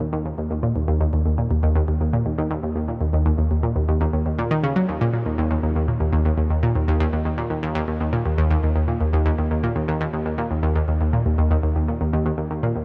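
A light reverb surrounds this cosmic, expansive ambient excerpt at 120 BPM in a straight 4/4. A lone analog pluck carries the whole 12.8 seconds, sitting up front and ranging from Eb2 to Gb3. Its bright, round, detuned sawtooth and square tones, with a noise layer, fast attack, short decay and a filter sweep, are thickened by chorus and trailed by tape echo.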